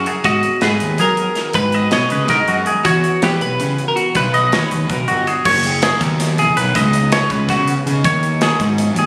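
Playful and intricate, this math rock and midwest emo fragment from a longer piece moves in 7/8. A clean, compressed twelve-string electric guitar carries the delayed melody until 5.2 s, just before the music shifts into its second section at 5.5 s, while a twangy guitar spins delayed arpeggios up front over a fuzzy, overdriven picked bass. Beneath them, a slightly broken-up guitar through a small old amp adds faintly chorused accompaniment in the background, and a modern studio drum kit with punchy kick, medium-tuned snare and bright cymbals drives it all, captured on a phone in the room with light studio reverb and compression.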